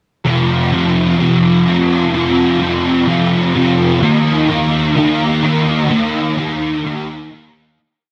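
A straight 4/4 rock pulse carries this hazy, brooding short piece, played by a lone fuzz guitar that strums chords up front, shifting from F5 to Eb5 at 4.0 seconds with whammy-bar dips along the way. The distorted, double-tracked tone is thickened by ensemble chorus and a slapback echo, set in light digital reverb within a dense, heavily limited modern master. The verse begins to fade at 5.9 seconds and is gone by 7.8 seconds.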